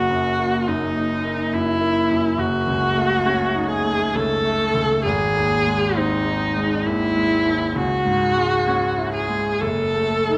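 Set in a wet recital hall with a 1.6-second reverb, this elegiac, melancholic fragment of a longer romantic classical duo moves in a rubato 3/4 at roughly 59-71 BPM, where a single bowed viola with a rich, expressive tone carries the melody with vibrato and portamento over a clear grand piano accompaniment whose open voicings ring with long sustain through dark harmonies from D#m/F# through C#m to D#dim/F#.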